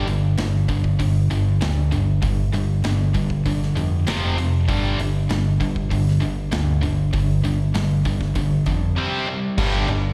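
Hard rock at 98 BPM in 4/4, this short excerpt cut from a longer piece feels heavy and driving, heard as a live gig through the venue's PA with a recital hall's light reverb around it. Two guitars carry the riff from the start: a bright, tight distorted guitar up front with slapback echo, and a cranked stack guitar, also bright but overdriven and sitting in the background. Underneath, a picked electric bass sounds dark, round and punchy, pushed up front with an amped edge. A big acoustic rock kit with a medium-tuned snare and punchy kick works through crash cymbal, hi-hat, kick and snare from 0.1 seconds. The harmony moves between G5, F5 and C5 power chords, and at 9.6 seconds a warm, double-tracked, overdriven guitar with slapback echo joins in the background as the passage returns to G5.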